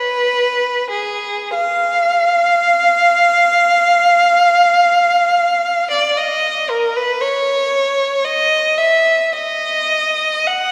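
A lone bowed violin sings a mournful, yearning classical line from the first second, with a focused, warm tone, smooth top end and expressive vibrato as it moves between G#4 and F#5. The pace is slow and free, with rubato at 45-58 BPM in 4/4. The player sits up front within a lush church reverb that carries a 3.1-second tail through this 10.7-second section cut from a longer piece.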